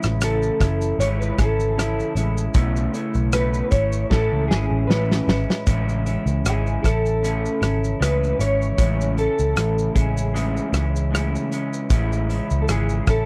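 A loose indie drum kit with a punchy kick, medium-tuned snare, rim click, shaker and hi-hat sets a lightly swung 77 BPM groove in A major for this laid-back, dreamy bedroom-pop excerpt, where a dark, round, foam-muted vintage bass sits up front, a twangy, slightly broken-up guitar through a small old amp adds accompaniment with subtle chorus and vibrato, a hollow, flute-like pad hums in the background, and a mellow, clean fingered lead guitar with analog chorus and tape echo enters at 0.2 seconds, its solo running until 5.7 seconds across a drum fill from 4.1 seconds, all over F#m9, B9sus4 and Amaj7 chords in a dry, close 1970s-style sound.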